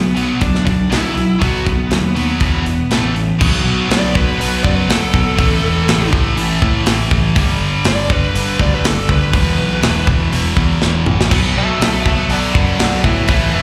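This heavy, menacing hard rock excerpt opens with two picked rhythm guitars grinding out a riff in the background, one a bright, overdriven cranked stack with slapback echo and the other a high-gain, distorted tone with the same slapback. A modern picked electric bass sits up front with a direct, bright edge, joined a moment later by a tight metal drum kit with bright cymbals, a medium-tuned snare and a tight kick, mixed prominently. Riding on top, a smooth overdriven lead guitar with a dark voice carries the melody, treated with plate reverb, slapback echo and digital delay. The lead breaks into a solo at 3.4 seconds over a progression that moves through power chords before settling on B minor, while the drums drop in a short fill around 10.8 seconds. The whole performance comes across as a live club gig heard through the venue's PA, wrapped in a light room reverb.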